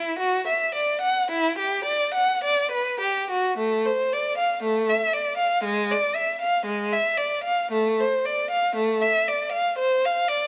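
Grave and flowing, this short cut from a longer classical piece is a baroque-style suite movement for unaccompanied violin, moving at a slow 51-60 BPM in 4/4 with a free, rubato feel. A single bowed violin carries the whole passage alone from 0.0 to 10.5 s, its rich tone shaped by expressive vibrato and portamento as it ranges from G#3 up to F#5. The music opens in E minor and shifts to A minor at 3.6 s. The violin sits up front, caught by close, detailed microphones. A moderate recital hall reverb, with a decay of about 1.3 s, surrounds the instrument with a sense of space.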